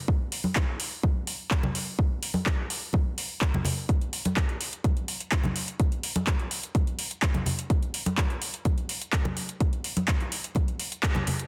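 House groove in straight 4/4, bittersweet yet driving, cut from a longer piece and built entirely from percussion. A deep, overdriven electronic kick drum sits up front, layered and re-recorded in a large room. A deep house drum kit of handclaps and metallic hi-hats carries the same overdriven grit and roomy placement, entering at 0.3 seconds. Congas played with hard hands sound close and dry against it, with sidechain pumping giving them a breathing pulse. Light reverb and a digital ambience surround a dense, heavily limited modern master, and the full band hits an accent at 11.0 seconds just before the end.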